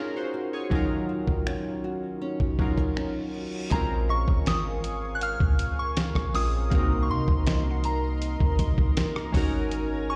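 The sound is that of a big sound system playing into a bare room, with a light touch of large studio reverb hanging over this excerpt cut from a longer piece. It is a sensual, longing contemporary R&B groove at 80 BPM in 4/4 with a straight feel, set in Bb minor. Round, chorused analog keys and a fingerpicked flamenco guitar, its arpeggios trailed by delay, open over an Ab9sus4 chord, and a gritty, compressed soul sampler-style drum kit with a thumpy kick, fat snare, hi-hat, rim clicks and finger snaps sits up front from 0.7 seconds. An electronic reverse cymbal at 3.0 seconds leads into the second section at 3.7 seconds, where a boomy, clean 808-style bass lands up front, a shimmering pulse-width pad holds chords, and a mellow FM synth bell carries the high melody with chorus and delay. The guitar soon falls away, while a very quiet, crystalline wavetable pluck adds texture as the chords move through Bbm7 and Cm7b5 back to Ab9sus4.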